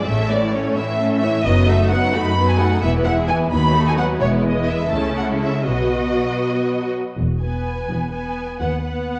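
A worn, warbling cassette sheen with drifting pitch colours this lively, cheerful excerpt of a quick classical-period movement for string orchestra in E major, set in a rubato 6/8 at 86 BPM and washed in a wet scoring-stage reverb. A focused, up-front violin section carries the melody while a smooth second violin line, intense violas, lush cellos and expressive double basses fill out the harmony and bass, all bowed with vibrato. The music moves through its opening section and into a new one at 7.2 seconds before the fragment breaks off.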